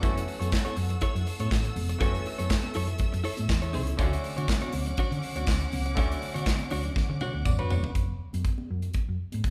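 Sultry and glamorous, this brief disco cut moves at 121 BPM in a straight 4/4, sitting in a slightly lowered tuning and moving from F#m7 to Dmaj7. A modern studio kit sits up front with a tight kick, medium-tuned snare, hi-hat, toms and handclaps, while a dark, round hollow-body bass, amped and fingered, carries the low end. A clean, compressed electric guitar with tremolo picks out accompaniment beside an overdriven, stringy clav played through a combo amp, and a lush, close string section holds sustained chords with vibrato. Bright, high-tuned congas sit in the background and a jingly tambourine is very quiet. A drum fill and a clav fill arrive together at 7.0 seconds, after which guitar, clav, strings and tambourine stop, leaving drums, bass and congas to play out the final moments until 9.5 seconds, all heard as a band live in one room with moderate large-studio reverb.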